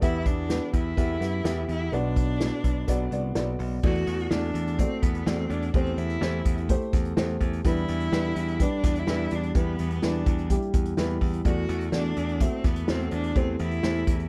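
A dry mix opens this bittersweet, dramatic slice of piano-driven pop in E minor, moving at 126 BPM in a straight 4/4. A dark, woody, somewhat boxy upright piano carries the accompaniment over a bright, punchy picked electric bass that sits up front, while an acoustic drum kit played with bundle sticks adds a punchy kick, medium-tuned snare, hi-hat and dark crash cymbals from a roomy studio space. Above them a single rich, focused cello sings the bowed melody with vibrato from a slight distance, shifting over Em and Bm before settling into chords held over an E in the bass after 3.8 seconds.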